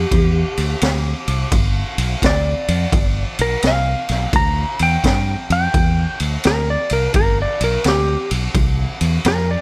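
A swung 86 BPM shuffle in 4/4 drives this soulful, laid-back electric blues fragment, where a raw garage drum kit with boomy kick, high-tuned snare, ride cymbal and a gritty, saturated tone sits up front beside a round, punchy fingered electric bass, while a dark, clean, compressed lap steel guitar bathed in plate reverb carries a slide solo over G, moving to C at 8.5 seconds, in a lightly reverberant room.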